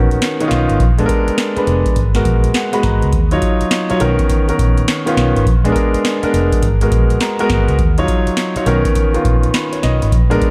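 Slick and confident, this short clip from a longer new jack swing R&B piece rides a swung sixteenth-note feel in 4/4. A booming analog drum machine sits up front with a deep kick, crisp snare, handclaps and metallic hi-hats, the snare, claps and hats carrying a short room while the whole kit was re-recorded in a large space. Underneath, a vintage muted fingered electric bass gives a round, punchy, foam-muted low end with an amped, dark edge. A warm concert grand piano, intimate and polished with audible action noise and long sustain, voices rich extended chords cycling through Bmaj9, Bb7b9, Abm9 and Ebm9, adding brief fills around 2.3 and 6.9 seconds. A moderate, lush hall reverb wraps the dark, warm production.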